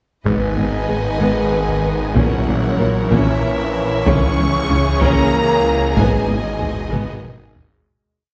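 Heard from further back in a wet scoring stage, this short, complete hybrid orchestral and electronic film cue in G# minor moves at a slow 63 BPM in 6/8, vast and tense, as a warm violin section carries the melody over a clear second violin line, a rich viola ostinato, a mellow French horn section doubling the tune at the octave and very quiet trombone chords. A bright cello section, a distant double bass section and a snarling, growling saw bass hold down the low end, while background taiko drums pound a heavy ostinato and a tine-like synth pluck pulses through chorus and digital delay. A warbly, lo-fi tape-like pad enters at 1.1 seconds, the harmony runs G#m, A#dim, C#m and back to G#m, and a fade-out from 6.0 seconds ends with a drum fill at 6.9 seconds.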